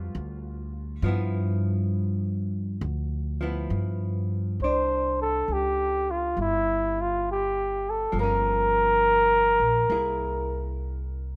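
Romantic and intimate, this short excerpt from a longer jazz ballad moves at a slow 68 BPM in 4/4 with a swung eighth-note feel, centred in C major and tuned slightly sharp of standard. An upright bass plays pizzicato from the start, its woody, steel-strung tone sitting up front in the low register. Alongside it, a miked and amplified hollow-body archtop guitar supplies picked accompaniment, clean and dark with a compressed edge, mixed low. At 4.6 seconds a breathy flugelhorn enters as the solo voice, singing a vintage-toned jazz melody with scooped notes, forward in the mix until 10.8 seconds. The harmony drifts from Dm7 and G6 through Csus2 and Gm7b5 to a closing Caug7. The whole has the loose feel of a rough home demo, with light reverb and a hint of studio ambience.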